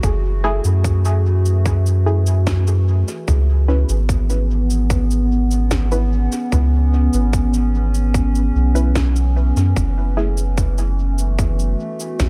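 A round, up-front dub sub bass anchors this meditative, spacious ambient dub excerpt at 74 BPM in F# minor, alongside a tight, overdriven electronic kick, a woody snare and cabasa trailing dub echo, a warbling, nostalgic pad with chorus, phaser and reverb sustaining chords that move from F#m9 through C#m7 to F#m7, and muted, filter-plucked chord stabs with cassette-tape colour that play from 0.4 to 10.4 seconds.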